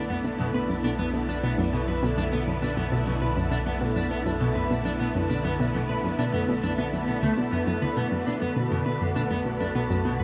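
Swirling, bright string-machine chords with ensemble chorus and phaser lead this cosmic, hypnotic stretch of ambient, sequencer-driven space music at 101 BPM in B minor on a sustained Bm7, alongside the dark, slightly broken-up arpeggios of a low-passed electric guitar with tape echo, a nasal, round analog pluck riff with chorus and tape echo, a fat, detuned analog bass holding B1, and a very quiet, breathy wind-like noise texture, all set in a wet shimmer reverb with a 9.1-second tail.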